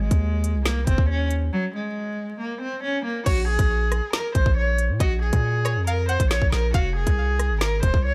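A bowed solo cello carries the melody in this dark, menacing drill excerpt, its rich, focused tone with vibrato sitting up front through a low-pass filter, over a distorted 808-style bass that hits heavy and aggressive with a noisy edge. At 138 BPM in a half-time feel in Bb minor, an electronic drill kit with a hard-clipped kick, woody snare, crisp hats, rim clicks, finger snaps and crash drives the track, with a break from 1.5 to 3.3 seconds and chords moving through Ab, Bbm and Fm. From 3.3 seconds a twangy, warbling, vintage resonator pluck with chorus, phaser and delay glints in the background, all in a dry mix laced with vinyl crackle.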